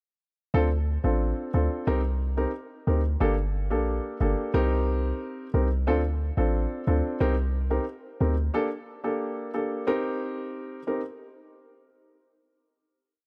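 A deep, boomy 808-style bass with a sine core, a noise layer, a fast attack and a decaying sound drives this hypnotic, sultry dancehall piece, playing syncopated low lines with slides from 0.5 until it stops at 8.5 seconds. A dark baby grand piano plays syncopated chords beside it, its intimate, natural tone carrying audible action noise and short sustain. Both parts sit up front in a small room ambience, with the piano continuing alone to 11.0 seconds.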